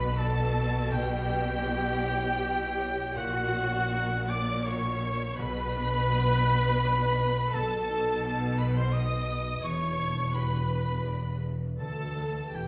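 Set in a wet recital hall, this solemn, elegiac classical excerpt in B minor moves in a rubato 3/4 at about 78-87 BPM, with a rich violin section carrying the melody over a clear violin section and a warm, lightly vibrato oboe on a second line, a lush viola section in accompaniment, a very quiet ringing harp playing arpeggios, a focused cello section and an expressive, up-front double bass section on the bass, and barely audible hard-mallet timpani touching in at 0.9 and 5.4 seconds as the harmony turns from Bm through B7 and Em7 to Bm/D.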